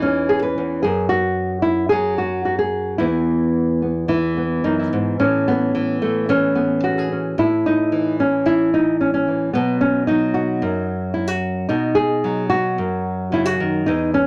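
A lone nylon-string guitar, dark, thumb-plucked and up front with audible finger squeak, plays a peaceful, nostalgic folk excerpt in a straight 4/4 at 111 BPM, tuned to A4 = 441 Hz, with a classical touch ranging from E2 to B4 as it settles onto Eadd9 at 3.0 seconds, moves to Aadd9 at 5.2 seconds and reaches B at 9.5 seconds, all captured in a dry, close 1970s-style studio sound with little reverb.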